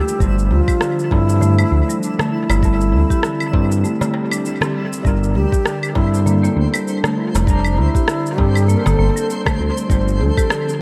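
An up-front, mellow sawtooth synth bass pumps beneath this mystical, hypnotic organic downtempo excerpt at 99 BPM in G dorian, where an airy bamboo bass bansuri carries the melody with vibrato and tape echo over woody padauk-bar marimba arpeggios, a gritty, barky overdriven tine electric piano with tremolo, a twinkling granular FM shimmer, a soft electronic kick, dub-echoed electronic cabasa, claves and rim click, and a crisp metal-shell darbuka in the background, with a brief break from 3.8 to 5.1 seconds marked by an electronic swell in an echo-heavy digital ambience.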